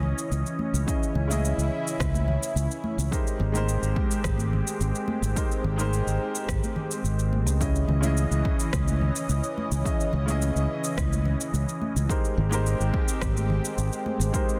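Punchy overdriven electronic kick, entering at 0.9 s, and a layered, overdriven shaker and rim click set a straight 4/4 pulse at 107 BPM in this smooth, blissful sunset chillout excerpt, with bright hard-hand congas tucked in the background, an up-front fingered electric bass, a clear, intimate grand piano with audible action noise and digital delay, and a lush, detuned sawtooth-and-square unison pad with slow attack, chorus and phaser, sustaining chords that alternate between Dbmadd9 and Abmaj9 in Ab major under light reverb and a dense, heavily limited master.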